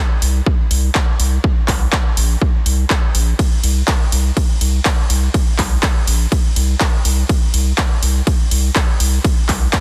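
Dense, heavily limited and nearly dry, this driving, expansive progressive house excerpt at 123 BPM sets a round, dark analog bass pumping from its sustained fast-attack low end between Bb1 and C2, an up-front, punchy overdriven electronic kick entering at 0.5 seconds, and a layered, overdriven house kit of handclaps plus hi-hat and ride cymbal, the hats and cymbal pumping under sidechain, both drum parts carrying the air of a large room.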